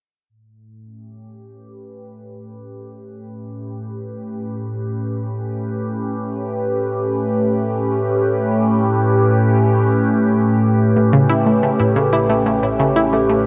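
This is ambient, sequencer-driven space music in free time, a luminous and cosmic passage cut from a longer piece. A phased analog pad fades in from 0.3 s, holding sustained chords up front with a swirling, evolving, wave-folded sawtooth tone treated with phaser and chorus, beginning on an A7 chord. At 11.0 s an analog pluck enters with a riff, its bright, round, nasal attack carrying chorus, phaser and tape echo. At the same moment a fat, thick analog bass settles in the background, sustaining a low A1 with a filter sweep. The whole passage sits in a huge, wet reverb with a long 7.8-second tail, giving the sound a vast, floating space.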